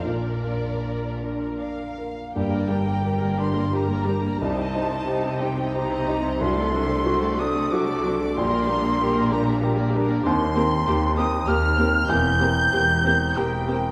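Lyrical and passionate, this classical excerpt in G minor moves in a rubato 3/4 at 75-101 BPM, led by a polished, up-front grand piano melody while a distant violin section with soft attack sings along in the background and a lush second violin section traces a second line. Smooth, even violas fill in the accompaniment above a bowed cello section and focused double basses. A pure, hollow concert flute joins at 1.6 seconds with its own vibrato-laden line, and a very quiet, mellow French horn section holds sustained chords from 2.4 to 12.3 seconds, all set in a moderate scoring-stage reverb.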